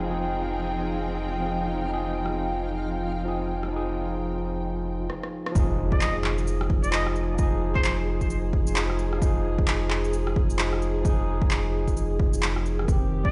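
Nocturnal and ghostly, this future garage cut moves at 131 BPM in F minor, swung on the sixteenths and resting on an Fm7 chord. An overdriven tine electric piano, barky and gritty through a combo amp, sits up front with vintage 12-bit sampler grit, delay, a low-pass filter and sidechain pumping, while a dark, woody studio string section holds bowed chords under a filter sweep during the first 5.6 seconds. A soft, round dub sub bass pumps beneath them, and a reversed, dreamy, detuned swelling texture drifts in the background until 5.1 seconds. Electronic rim clicks, shaker and handclaps come in at 2.3 seconds, and a drum fill leads to a very quiet impact at 5.6 seconds, where a punchy, layered electronic kick drum joins. Just after, a distant, nasal trumpet with a straight mute plays a brief breathy, jazz-style phrase with scooped notes through tape echo, all heard as if played on a big sound system in a bare stone room.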